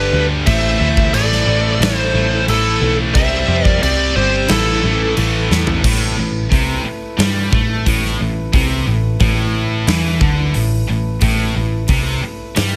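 Menacing and heavy, this hard rock excerpt in A minor at 89 BPM pairs an up-front biting lead guitar melody and its darker background second line, both overdriven with tape echo until 5.1 seconds, with a riff from overdriven semi-hollow, scooped high-gain and tight double-tracked distorted guitars, a round, foam-muted overdriven picked bass, a reedy, nasal harmonium holding sustained chords, and a huge arena drum kit with a punchy kick whose fill at 5.5 seconds leads into a new section at 5.8 seconds.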